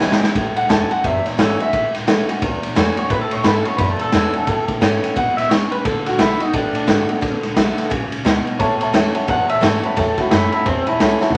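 A raw, saturated garage drum kit punches up front with a gritty, rolled-off top, driving this rowdy, rollicking rockabilly cut in A major at 174 BPM with a swung feel, as a twangy, slightly broken-up electric guitar through a small old amp carries the melody from 0.6 seconds over a bright dreadnought acoustic guitar, a woody, thumpy pizzicato upright bass in the background, and a dark, mellow upright piano that returns at 8.6 seconds, all in moderate studio reverb with vinyl crackle.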